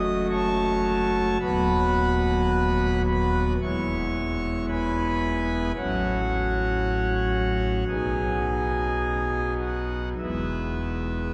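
Reverent and majestic, this short classical excerpt is a chorale-style passage for solo pipe organ, moving with a rubato feel in 4/4 over a progression that settles onto E at 3.6 and again at 10.2 seconds. The organ's foundation stops give a warm, thick, romantic voicing that spans from a deep D#1 up to D#6, and the instrument sits up front. A cathedral reverb with a long tail of 4.6 seconds fills the space around every chord.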